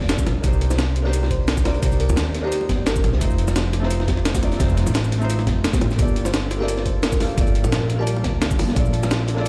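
Woody, thumpy pizzicato upright bass sits up front in this dreamy, lush stretch of liquid drum and bass, cut from a longer piece at 173 BPM in G minor with a gentle swing on the sixteenths. A felt-muted upright piano comps softly with delay, its intimate, mellow tone carrying audible action noise over chords moving from Cm9 to F7, Gm9 and Bbmaj7. Two breakbeat kits share the groove: a compressed, gritty sampler-style kit with hi-hat, shaker and a high-tuned snare, and a darker, saturated acoustic kit with rolled-off top that sits in the background, joined by an overdriven, knocking electronic kick and very quiet, round, low-tuned bongos. A bell-like FM electric piano with chorus, tremolo, delay and vintage 12-bit grit sparkles in the background with brief melodic phrases from 0.7 to 3.3 seconds and again from 6.3 seconds. At 7.0 seconds an ethereal, airy pad with slow attack and ensemble chorus enters very quietly beneath it all, while the whole mix carries the stone-room reverb of a big sound system in a bare space.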